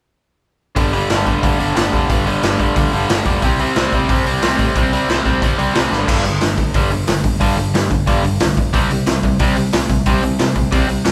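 Punk rock, upbeat and rowdy, cut from a longer piece, with a band playing live in one large, moderately reverberant studio room. A double-tracked, overdriven semi-hollow guitar sits up front with a picked riff over G5 and C5 chords, backed by a warm, overdriven picked electric bass in the background. A saturated garage drum kit with a punchy kick, dark cymbals and a rolled-off top pumps through the room, and a drum fill at 5.9 seconds pushes the song into its second section.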